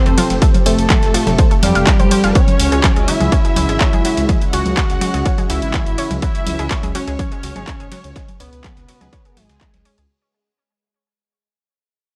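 A driving 124 BPM melodic techno groove in straight 4/4 is anchored by an overdriven, up-front electronic kick, a punchy analog drum machine with congas, handclaps, hi-hat and ride, and a very quiet, gritty sampler-style kit adding ride and snare, all over a deep, rumbling detuned saw bass that pumps to the sidechain. Cut from a longer piece at the drop, this dark, dramatic passage sets a thick, bold unison lead with tape echo beneath a dark violin section with portamento in the background, a round, nasal analog pluck spinning arpeggios, and a smooth chorused pad, moving from F to C#sus4 at 2.4 seconds as the fade-out begins. The sound is dry and gritty, with a digital ambience.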